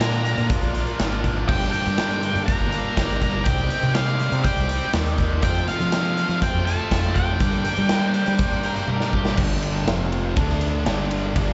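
An octave-fuzz lead guitar carries the melody over a quieter fuzzed second line of its own, both with plate reverb and slapback echo, until 8.8 seconds, in this brooding, driving classic rock passage in G minor at 122 BPM, cut from a longer piece and heard live through a club PA, where a double-tracked sludgy guitar riff, a growling overdriven fingered bass and a punchy, up-front big rock drum kit with bright cymbals push ahead, a thick tonewheel organ murmurs very quietly through its slow rotary speaker, and a bright overdriven semi-hollow guitar slips in with phaser at 7.9 seconds just before a drum fill at 8.9 seconds.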